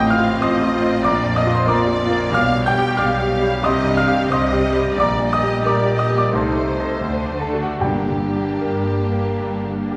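Brooding and tragic, this rubato classical passage in G minor at 72-96 BPM sets a clear, up-front concert grand piano, with audible action noise and deep bass, over a lush orchestra of warm and dark violin sections, a bright viola section entering at 0.1 s, rich cellos and double basses, and a distant French horn section holding sustained chords, while soft-mallet timpani sound briefly at 7.8 s as the harmony settles from D7 onto G minor in a reverberant hall.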